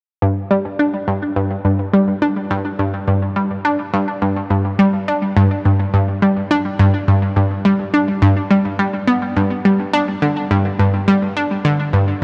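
A straight 4/4 pulse at 105 BPM carries this luminous, cosmic ambient piece in G major, heard as a short cut from a longer work. A single analog pluck plays a riff from 0.2 to 12.1 seconds, ranging from G2 to D4 and sitting up front in the mix. Its sound blends detuned sawtooth and square waves with a triangle tone, a noise layer and ring modulation, giving a round, bright voice with a fast attack, a short decay and a filter sweep. Chorus and tape echo thicken the pluck. A huge ambient reverb with an 8.1-second tail surrounds it, and the top end is capped, with nothing above 10.4 kHz.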